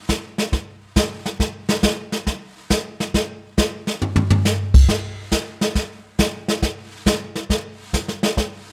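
A jazz brush drum kit opens almost immediately, swinging at a relaxed 138 BPM in 4/4 with brushes on a medium-tuned snare, alongside hi-hat, punchy kick, toms and dark crash cymbal, all set up front. Close, detailed microphones and light reverb capture the acoustic studio-room sound. A short drum fill arrives at 4.0 seconds in this brief cut from a longer piece.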